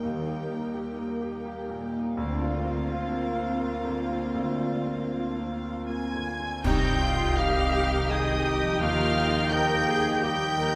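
A bright, polished grand piano with deep bass and long sustain carries the accompaniment in this tender, moving cinematic film score in a rubato 3/4. From the start it is backed by bowed violin, viola, cello and double bass sections, a mellow French horn section holding chords, and a ringing, thumb-plucked harp. At 5.9 s a smooth violin section takes a high melody with a hollow flute, followed by a clear oboe and a very quiet clarinet, while clash cymbals and concert bass drum strike a bright accent from 6.6 s as the harmony turns to minor, all set in a wet stone room.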